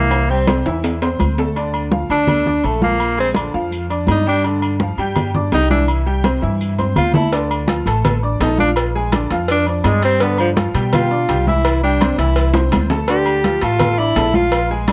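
Salsa with a joyful, sunny feel, this short cut from a longer piece puts a clear, punchy tenor saxophone up front, soloing with light vibrato and a smooth, forceful top over a bright, slightly detuned upright piano with a worn, brilliant edge and a woody pizzicato upright bass on steel strings. Ringing congas and metal-shell timbales with agogo bells drive the groove, with drum fills at 0.1, 6.8 and 12.5 seconds, and round, low-tuned cowbell and bongos, compressed and saturated under hard hands, join at 7.3 seconds. The sound is a dry, close 1970s-style studio recording.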